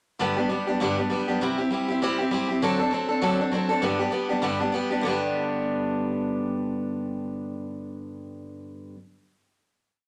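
Touched by lossy compression artefacts and a moderate large-studio reverb, this short, complete, rollicking rock piece at 198 BPM in G major features a lone picked steel-string dreadnought acoustic guitar, bright and full-bodied with fresh strings, placed up front and strumming swung eighths in open chord shapes through G, C, D7 and back to G before settling on a final chord at 5.0 seconds.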